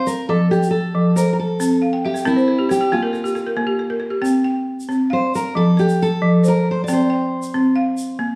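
West African traditional string and xylophone music in a joyful 12/8 at 91 BPM in C mixolydian, this short cut from a longer piece sets an up-front fingerpicked steel-string acoustic guitar melody over woody, buzzing balafon arpeggios struck with hard rubber mallets, with a fill from 1.8 to 4.2 seconds, while a grainy egg shaker sits quietly beneath, all in a moderate recital hall reverb.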